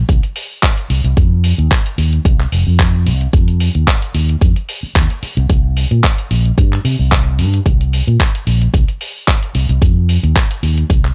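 A bright, punchy fingered electric bass with an envelope filter sits up front with transformer saturation and sidechain pumping, joined throughout by a punchy, layered electronic kick and a dusty, gritty sampler-style soul kit of handclaps and hi-hat, in a sensual, groovy nu-disco excerpt in C minor at 111 BPM with a light 16th-note swing and a dry, hardware-recorded sound.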